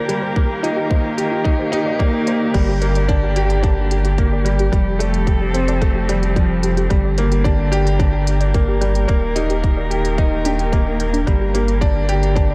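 A clear, woody upright piano riff sits up front in this hypnotic, moving piano-and-strings electronica in G minor at 110 BPM, cut from a longer piece, with a veiled, con sordino string quartet holding sustained chords beneath it and a soft, detuned pluck tracing arpeggios through chorus and delay in the background. Smooth hats and crash cymbal from an organic electronic kit enter at 0.1 seconds, a tight electronic kick arrives at 0.4 seconds, and after a short build-up the drop lands at 2.5 seconds as a deep, round analog bass enters with sidechain pumping. The dark production moves through Eb, Gm and Fadd9 under light reverb and digital ambience.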